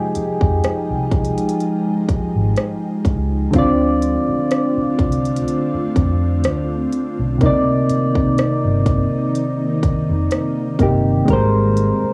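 Moody and late-night, this contemporary R&B excerpt in C minor sits at a slow 62 BPM with a gentle 16th-note swing, moving through Fm9, Dm7, Cm9 and Abmaj9. Soft, mellow electric-piano-like synth keys with chorus and a decaying, sine-like tone sit up front over an ethereal, airy pad of detuned sustained chords bathed in ensemble chorus and its own reverb, both carrying a cassette-tape character. A produced trap kit with a hard-clipped kick, crisp hi-hats and rim clicks joins at 0.1 seconds, and a dark, foam-muted fingered electric bass enters at 0.2 seconds, all set in a small room.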